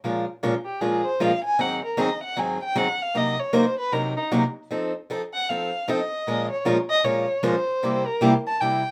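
A warm, bowed violin takes the lead, soloing from 0.7 seconds with expressive vibrato and sliding portamento, its upper register smooth rather than sharp. This short swinging jazz passage in 4/4, cut from a longer piece, has a virtuosic feel built on swung eighth notes. Beneath the solo, a picked steel-string parlour guitar supplies the accompaniment from the very start, its bright, fresh-stringed tone slightly boxy, with an occasional finger squeak. Both instruments sit up front in a moderate studio ambience. The guitar outlines a minor-key progression moving through Bbm7, Ab7, Cm7b5 and F7 before returning to Bbm7 and landing on C7.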